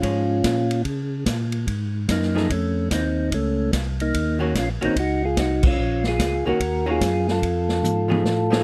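A swung 146 BPM groove in 4/4 drives this late-night, soulful soul jazz organ trio in Bb minor, where a mellow, round percussive tonewheel organ carries the melody through a slow rotary speaker over a clean, hollow-body archtop guitar's picked accompaniment, a fat, lightly overdriven tonewheel organ bass with chorus vibrato and key click, and a punchy, rolled-off vintage drum kit, all close and dry, with a band accent at 5.6 seconds and a drum fill closing out this cut from a longer piece.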